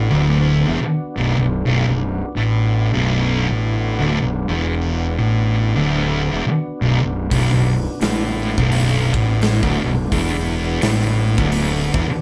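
Sludgy and hypnotic, this swung 4/4 stoner and doom metal excerpt sits on a single B minor chord as two thick, picked fuzz guitars, one mixed up front, grind out a low riff over a bright, growly overdriven fingered bass, while a clear tonewheel organ with key click, chorus vibrato and slow rotary speaker holds sustained chords in the background, and a big-room acoustic rock kit with punchy kick and medium-tuned snare joins up front at 7.3 s, all captured as a band playing live in one room with moderate reverb.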